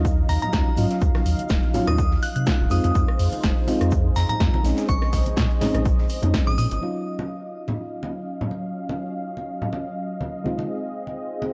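A swung 4/4 groove drives this moody, late-night deep house excerpt, built on an overdriven, up-front electronic kick and a punchy analog drum machine supplying hi-hat, rim click and a filtered snare, with a very quiet, dry reggae kit adding hi-hat, shaker and a high-tuned snare beneath. Ringing congas, played with hard hands in a small room, run through the whole passage, while a round sine sub bass pumps against the kick. Sustained chords from a smooth, detuned sawtooth pad and dark, chorused stabs from a soft FM electric piano carry a minor-ninth and eleventh progression, and the piano is shaped by a filter sweep and dub echo through the opening section. High above, a glassy, crystalline synth bell sings a melody coloured by chorus, phaser and dub echo. By 6.8 s the drums, bass and bell have fallen away, leaving the pad, piano and congas to float in a studio reverb.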